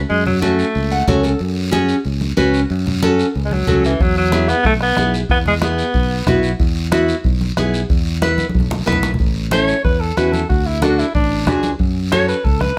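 Joyful and festive, this cumbia moves at 185 BPM in 4/4, anchored by a bright, fingerpicked nylon-string guitar and a growly, punchy fingered electric bass up front over F#m and E chords, with soft-handed congas in the background and a raspy, saturated guiro. A soft-beatered bombo, close and dry, joins at 4.0 s, while a warm alto saxophone with vibrato and a roomy, distant tone plays brief melody phrases before a drum fill leads into its solo from 9.2 s over A, D and F#m. Moderate studio reverb surrounds the ensemble in this excerpt from a longer piece.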